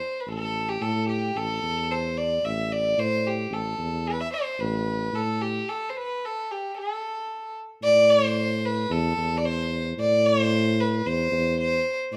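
Light reverb surrounds this longing, soulful Turkish makam ensemble piece at 111 BPM in A huseyni, where a single bowed violin carries the melody up front with a pure, floating sul tasto tone of soft attack that still feels distant, a warm tuba joins at 0.3 seconds on the bass with vibrato, scooped notes and a smooth, jazz-style top, and a break from 5.7 to 7.8 seconds leads into the second section.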